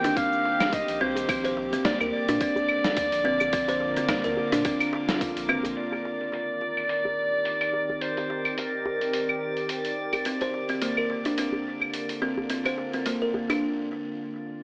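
Organic downtempo in C minor at 107 BPM with a 16th-note swing, earthy and warm, cut from a longer piece: an up-front classical-style clarinet carries the melody through digital delay until 10.0 s, over a tense, string-like bowed drone with vibrato and pumping, a glassy chorused haze of drifting harmonics, and a buzzing, woody kalimba playing delayed arpeggios that returns at 10.3 s. Underneath, a gritty, compressed sampler-style kit of claves, hi-hat, shaker and snare sits up front with muffled, low-passed tone, joined by a tight, cracking djembe in the background, a tape-toned electronic kick until 5.3 s, and a round sine sub bass until 5.8 s. The chords move between Cm7 and Bb, a filter sweep runs on the drone from 5.8 s, a break arrives at 13.6 s, and the whole mix has a lo-fi AM radio colour inside a moderate echo-chamber ambience.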